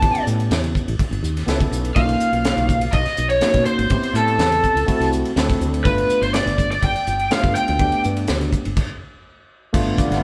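A dark, overdriven lead guitar through a small cranked amp carries the soaring melody up front in this slick electric jazz fusion excerpt at 124 BPM in G mixolydian, joined in the background by a bright overdriven second guitar playing a second line until 8.0 s, over a barky tine electric piano, a growly, woody fretless bass and a crisp, punchy drum kit with a high-tuned snare, all in a moderate stone room, with a band stop at 8.8 s before a lush, detuned unison pad with chorus and phaser and very quiet damped congas arrive at 10.0 s.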